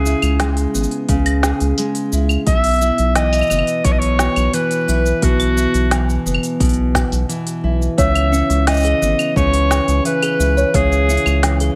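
A bright, vintage-toned clarinet carries the melody up front in this autumnal, intimate folktronica excerpt, its soft attack colored by tape echo. Beneath it, a fingerpicked nylon-string guitar with fresh strings and a full-bodied sound plays arpeggios, also touched by tape echo, while a round, dark analog bass holds a sustained, fast-attack low line. An organic electronic drum kit of claves, hi-hat, shaker and a woody snare keeps a straight 4/4 pulse, joined at 1.1 seconds by a deep electronic kick sitting in the background. At 8.0 seconds a delicate, tinkling music box, slightly out of tune and dry at its source, adds a second line through digital delay as the harmony returns to C#m7 from a long Bsus4. Light reverb, digital ambience and vinyl crackle give the whole a lived-in atmosphere.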